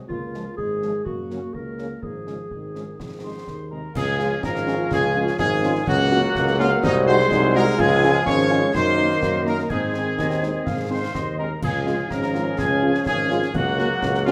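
Spirited and proud, this military-style march for wind band moves at 125 BPM in a straight 2/4, set in D-flat major and cut from a longer piece. A dark, distant trumpet section carries the melody with light vibrato, while a warm, roomy tuba anchors the bass and a concert bass drum, snare drum and clash cymbals with dark cymbals keep the march going from the start. In the background, a mellow euphonium and a tight woodwind section add second lines, and a punchy French horn section with a smooth top fills in the accompaniment. A pure, tongued piccolo joins at 3.2 seconds with its own vibrato-laden second line, and a trombone section enters at 4.0 seconds with sustained chords as the opening material begins again. The harmony moves mainly among D-flat, G-flat and A-flat, and the whole band sits in a moderate large studio reverb.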